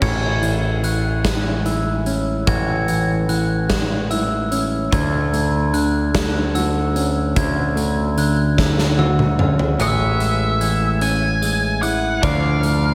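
Cinematic and euphoric, this slow post-rock passage in A major moves at 49 BPM in a broad 6/8, drawn from a longer piece and bathed in a lush hall reverb that gives it a big arena sound. A dark, clean electric guitar plays fingered arpeggios with slapback echo and digital delay, while a glockenspiel struck with soft plastic mallets adds bell-like, ringing arpeggios high above, carrying the same echo and delay. In the background, a bright pedal steel guitar holds sustained chords through a lush chorus, with slide and volume swells. Up front, a growling picked bass with overdrive anchors the low end beside a big acoustic rock kit with a punchy kick, medium-tuned snare, hi-hat, crash and toms in a stone-room ambience, and a drum fill from 8.6 to 9.8 seconds leads into the next section. At 9.8 seconds an octave-fuzz lead guitar enters with a picked, distorted melody, also treated with slapback echo and delay, as the harmony moves from Amaj7 and Dmaj7 back to Amaj7 before turning to Dm.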